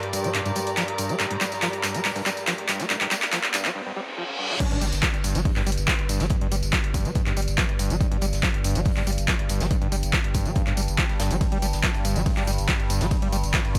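A straight 4/4 pulse at 141 BPM drives this industrial, relentless peak-time techno in G minor. It opens on a build-up: an overdriven, punchy analog drum machine up front with claps, hats, tambourine, ride and crash, a very quiet dry cocktail kit with a high-tuned snare, a squelchy, screaming sawtooth acid line under a resonant filter sweep with chorus and delay, a detuned drone of moving overtones, and a dark, intimate bowed chamber string section that drops out at 3.8 seconds, while a background riser, joined by a reverse cymbal in the break, carries toward the drop. At 4.6 seconds the drop lands with an overdriven kick re-recorded in a large room and a thick, saturated sine sub bass, while pumping sidechain breathes through the bass, acid line, drone and drum-machine cymbals.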